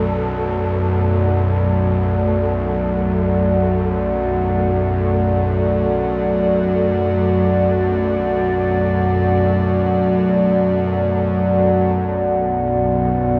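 Desolate and cavernous, this dark ambient drone unfolds as a fragment cut from a longer piece. A deep, moody analog pad holds sustained chords up front, its detuned tone thickened by a sub octave and colored with chorus and phaser. Beneath it, a bowed-like drone sits low with a tense, nasal, string-like edge and a touch of vibrato, carrying its own built-in reverb. Far in the background, an airy, breathy wind-like texture hovers until it stops at 12.0 s, just as the harmony shifts from D to Bm. A cathedral reverb with a five-second tail bathes the whole sound in a vast, echoing space.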